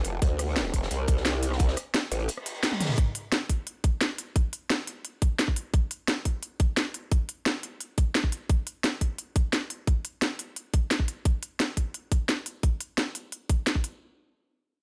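A small room frames this tense, mechanical excerpt of dark technical drum and bass at 174 BPM in 4/4, with its electronic kits pushed up front and tinged with tape. A growling, aggressive bass with a formant-filtered wobble, saturation and chorus snarls through the opening 2.3 seconds, while a gritty, rolled-off breakbeat kit sits in the background beneath a layered electronic kit of cracking snare, crisp hats, rim clicks and toms and a tight electronic kick that carry on to the end. A short electronic reverse cymbal runs from 2.4 to 3.0 seconds, with a drum fill arriving at 2.7 seconds.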